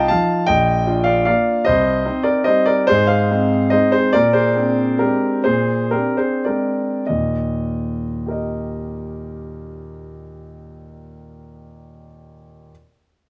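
A solo concert grand piano with deep bass, an open tone and long sustain sits up front in this elegant, graceful classical waltz excerpt in Eb major and 3/4, its rubato tempo ranging from 92 to 163 BPM and slowing from 3.5 to 7.1 seconds as the harmony moves through Bb, Cm, Fm7/Ab and Bb13 to an Eb that begins a new section, heard through close, detailed microphones and light reverb.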